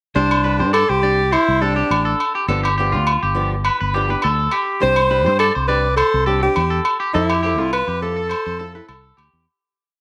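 A fingerpicked flamenco guitar opens at 0.1 s with rhythmic strumming in upper chord shapes, setting a sunny, warm highlife groove at 103 BPM in C major with a gentle swing, soon joined by a clear, close-miked alto saxophone carrying a jazz-style, motif-based melody of call phrases with vibrato and scooped notes, a twangy, slightly broken-up electric guitar picking an arpeggiated ostinato through slapback echo, a dark, round fingered bass playing a syncopated figure up front, and ringing agogo bells keeping a low bell time line, all moving over Csus2, G7 and Fmaj7 in a moderate echo-chamber reverb and small-room ambience before the piece fades out from 7.1 s.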